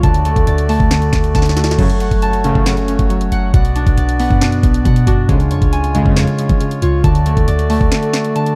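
Hip hop in a trap style at 137 BPM with a half-time feel, this hard-hitting, eerie cut moves through D, F#m, Bm and C# over warbling, nostalgic lo-fi synth keys with chorus, a reedy, smooth accordion holding chords low in the mix, and a fingerpicked concert harp ringing out arpeggios through digital delay. Up front, an electronic trap kit pairs a knocking kick and sharp snare with bright hats, handclaps and crash, while a clean, boomy sine 808 bass anchors the low end until it drops out for a break at 7.9 seconds. Between 1.8 and 6.3 seconds, fat, detuned analog synth brass adds bold stabs in the background, colored by chorus and delay, and the mix sits close with little reverb.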